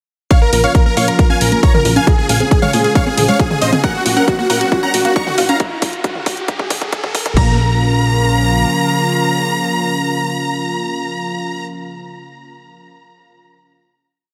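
A punchy four-on-the-floor electronic kick and a tape-toned house kit of programmed hats, backbeat, mid tom and crash drive this soaring, emotional uplifting trance piece in straight 4/4 at 136 BPM in Bb minor, where a funky, wave-folded plucky analog bass pumps off the beat beneath a lush, warbling unison pad, a tight arpeggiated sequenced synth under a filter sweep, and a huge, euphoric supersaw lead riffing in thirds and sixths with dub echo, doubled by a round, bright analog pluck, as a background riser enters at 2.7 seconds and a drum fill carries the build into a final Bbm chord at 7.4 seconds, all set in light digital ambience.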